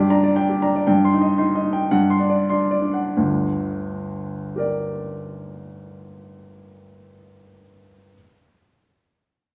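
In a flexible two-beat metre played with free rubato, this short fragment of a classical virtuoso piano study pulls back noticeably between 0.4 and 3.2 seconds. The mood is stormy and passionate. A solo baby grand piano carries the whole passage from 0.0 to 8.2 seconds, ranging from deep bass notes up into its bright upper register. Its tone is clear and open, with a short sustain, and it sits up front in the sound. The harmony moves from the home minor chord through darker chords over a held bass before returning home at 3.2 seconds, where a new phrase begins. A moderate reverb and a small-room ambience give the instrument a sense of space.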